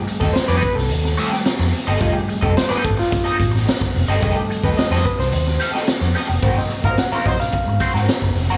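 A gritty, lightly reverberant small-room sound frames this funky 109 BPM excerpt in F mixolydian, where an overdriven reed electric piano with fast tremolo plays stabbing solo lines over a twangy, slightly broken-up wah guitar, a dark, round foam-muted fingered bass, and a raw, punchy garage drum kit with a high-tuned snare, before a smooth horn section briefly adds a second line at 6.9 seconds during a band accent on Ab9.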